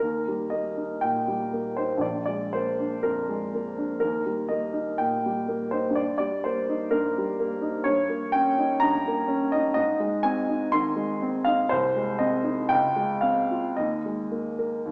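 A woody upright piano opens alone, its close, up-front tone carrying a hopeful and passionate romantic character piece for solo piano in 4/4. The playing breathes with rubato, stretching and pressing the pulse as the harmony moves from Eb through Bb7 and back, then leans into Eb7/G at 7.9 s to settle into a new tonal centre around Ab. Later chords colour the phrase with Ab/C and a tender Dbmaj7 before an Ebsus4 at 13.8 s leaves the music poised and unresolved. The piano spans a generous range, from deep Bb1 in the bass up to C6 in the treble, and its warm body sits inside a wet recital hall reverb. The overall recording sounds heard from further back in the room with a small speaker quality, and this brief passage is cut from a longer piece.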